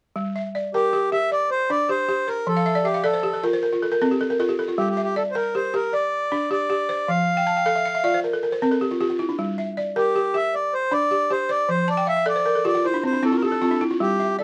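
West African traditional music in a flowing, hypnotic 12/8 at 104 BPM counted in dotted quarters, set in G dorian and cut from a longer piece. The balafon opens at 0.2 seconds with woody, buzzing arpeggios struck with rubber mallets, sitting mid-forward and up front across a span from F3 to A5. The accordion joins at 0.7 seconds with a reedy single-reed melody between G4 and F5, its dry tuning and clear, full tone close-miked and dry. The harmony rocks between Gm and F throughout, and the balafon breaks into fills at 2.6, 7.4 and 11.9 seconds. A light reverb surrounds the two instruments, which both play on to the end at 14.4 seconds.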